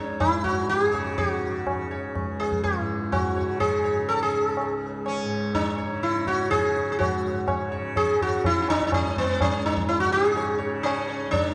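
This brief passage, cut from a longer Hindustani classical performance, opens with sitar and tanpura sounding together, the sitar carrying the melody in raga Bhairavi on C# while the tanpura holds a drone beneath it. The mood is meditative and solemn, moving at 124 BPM in a straight 3/4. Tabla enters at 0.2 seconds, its high-tuned, ringing strokes set in a small-room sound and sitting further back than the sitar. The sitar is up front, mellow and round, its plectrum-plucked notes buzzing against sympathetic strings that give it a shimmer. The tanpura is brighter and softly plucked, with its own buzzing, shimmering drone low in the mix. A wet church reverb with a long tail surrounds the recording, and the music shifts to a new section at 7.0 seconds before the cut at 11.5 seconds.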